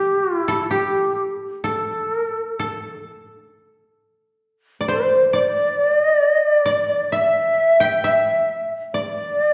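Rubato phrasing floats freely over a loose 4/4 in this calm, austere piece of Japanese traditional music, cut from a longer performance and lasting about 9.5 seconds. An airy, end-blown bamboo shakuhachi carries the melody up front, its tongued notes marked by chiff and expressive vibrato, while a quieter koto, played with fingerpicks, adds a woody second line throughout. The pair sound as if heard from further back in a reverberant recital hall.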